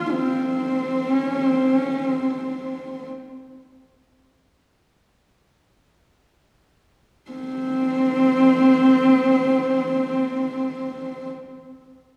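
In free time that slows through the first 7.3 seconds, this windswept, vast Mongolian folk fragment features a lone, husky horsehead fiddle played close and up front, its dark, airy bowing, vibrato and sliding portamento moving between C4 and F4 until 11.3 seconds, all bathed in a long, wet stage reverb.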